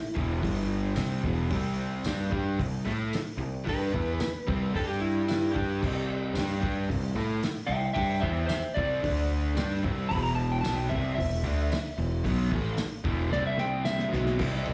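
A straight 4/4 garage rock groove drives this raw, menacing live cut from a longer piece, heard through the venue's PA with club reverb, as a slightly broken-up electric slide guitar takes a solo from the opening second, coloured by slapback echo and digital delay. Beneath it, a double-tracked, overdriven garage guitar riff and a round, fuzzed picked bass sit up front, while a muffled, cloth-damped drum kit with a fat snare, tight kick and dark cymbals thuds along. A close, jingly tambourine joins at 1.0 seconds, and the drums break into a fill at 13.3 seconds.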